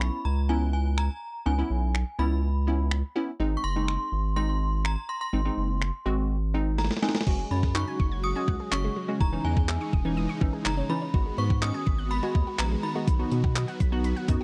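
Energetic and driving, this dance-pop excerpt at 124 BPM in C# dorian pairs a thumpy, crisp 8-bit drum machine with crash, snaps, claps, hi-hat and snare, a deep, round analog bass and phased wavetable chord stabs, both pumping to the sidechain, under a ringing, inharmonic FM synth chime with ensemble chorus and slapback echo, then after a drum fill at 6.8 seconds adds huge, lush supersaw chords and a detuned, chorused analog pluck playing arpeggios from 7.3 seconds, all in a dry, close 1970s-style studio sound.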